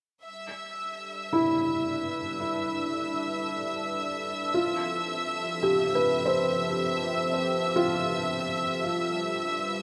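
A detuned sawtooth pad fades in with chorus alongside a bright, biting violin section with light vibrato high above it, and at 1.3 s a felt-muted upright piano adds mellow, intimate arpeggios through tape echo, all bathed in a cathedral reverb as this serene ambient excerpt moves from G to Fmaj7 and onto G7.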